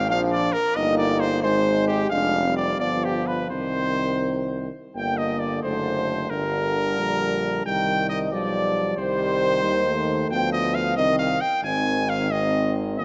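Heroic and solemn, this classical brass quintet excerpt moves in a rubato 6/8, with a clear, soft-attacked trumpet carrying the melody up front while a mellow flugelhorn adds a second line in the background. A punchy French horn and a lightly vibrato-tinged euphonium fill out the accompaniment, and a distant, roomy tuba anchors the bass, all set in a moderate concert hall reverb. The music shifts into a new section at 4.9 seconds, its harmony alternating between minor chords and dominant sevenths before arriving on an Ab chord.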